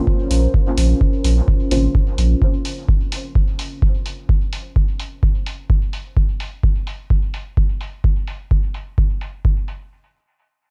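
Up-front warm, round sub bass pumps beneath a deep, analog kick in this hypnotic dub techno excerpt at 128 BPM in Bb minor, where a dark, detuned chord stab with phaser and dub echo sounds for the first 1.9 seconds over a moody sawtooth pad under a filter sweep until 6.2 seconds, while metallic hats ride a low-pass filter in an echo-heavy digital ambience.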